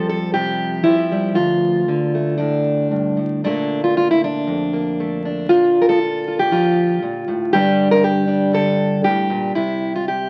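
Folk for solo fingerstyle acoustic guitar, intimate and reflective, with a rubato feel that lets the phrases breathe freely. A plugged-in steel-string guitar is fingerpicked up front with a concert-ready, warm tone, moving from Fsus2 and Dm into Bbmaj7, Gmadd9 and finally C at 9.6 seconds. Moderate studio reverb surrounds the instrument, while the crackle of a very old 78 rpm record lends the brief fragment a dusty, time-worn character.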